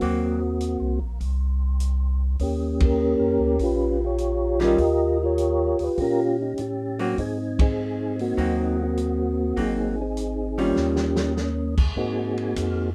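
Soul jazz organ trio excerpt at 100 BPM in 4/4, swinging and soulful with a strong eighth-note swing, moving between rootless Ab9 and Eb9 chords in a small, moderately reverberant room. A soft, flute-like tonewheel organ carries the melody with second-harmonic percussion, chorus vibrato and a slow rotary speaker, while a second organ plays the bass with a piping, scooped tone and audible key click. A dark, clean hollow-body archtop guitar adds picked accompaniment, re-entering at 4.6 seconds, and an up-front vintage kit with dark cymbals and a punchy kick joins band accents at 2.7 and 7.5 seconds before a drum fill at 10.8 seconds.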